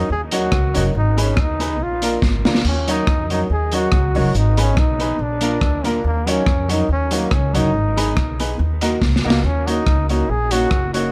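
Set in a light reverb, this energetic, driving ska passage in Eb minor at 141 BPM pairs a bright, punchy trombone melody with scooped notes and dub echo with a dark, clean, fingered electric guitar that also carries dub echo, while clear, slightly detuned upright piano stabs sit in the background, a woody pizzicato upright bass anchors the Ebm7, Abm and Bb changes, and a gritty, saturated breakbeat drum kit enters up front at 0.3 seconds and adds fills at 2.2 and 9.0 seconds.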